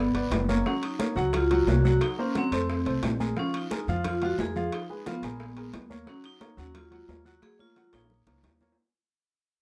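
A woody, thumpy upright bass sits up front in this sultry, driving Afro-Cuban jazz excerpt in Eb minor at 177 BPM, its dark gut-string pizzicato anchoring a vibraphone melody that rings bright and metallic with slow motor vibrato from medium hard mallets. A polished, present upright piano with short sustain supplies the accompaniment, while high-tuned congas with a thin, damped skin, faint tight bongos, ringing metal-shell timbales in the background and a raspy guiro drive the rhythm. The whole passage fades out in a moderate small room ambience, closing on a drum fill from 7.4 seconds.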